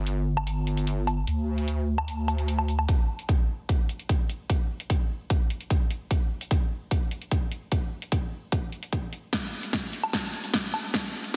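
A half-time 4/4 pulse at 149 BPM drives this heavy, chaotic wobble dubstep excerpt, which opens on a saturated, detuned square-and-sine wobble bass with chorus and overdrive that gives way at 2.9 s to a punchy, tape-warm electronic kick, while a big-room dance kit of punchy snare, metallic hi-hats and woodblock plays throughout and the build-up carries a filter sweep before closing on a drum fill from 9.3 s, set in a dense, heavily limited master with light reverb.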